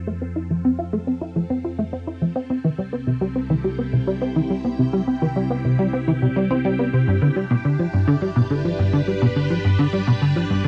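A swirling, bright string machine fades in over a warbling, evolving analog drone, opening this expansive, luminous fragment of ambient, sequencer-driven space music as the chords move from F to C at 2.5 seconds and on to G at 7.1 seconds. Up front, a punchy, funky analog bass riff with a detuned, plucky attack carries ensemble chorus, delay and a filter sweep throughout. Cassette tape grain on the strings and the bass, together with a short, wet booth ambience, gives this home recording a lo-fi, intimate feel.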